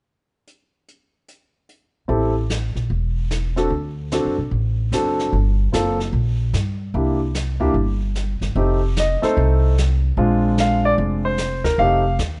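An up-front concert grand piano with a deep, natural low end carries the melody from 2.1 seconds, joined by a woody pizzicato upright bass, after the brushed drum kit, with its boomy kick and medium-tuned snare, plays alone from 0.5 seconds, in this playful, relaxed swinging jazz trio at 149 BPM in F mixolydian, moving through Am, D7, Gm and C7 to F7, Bb9 and F9 under light reverb and a dark production.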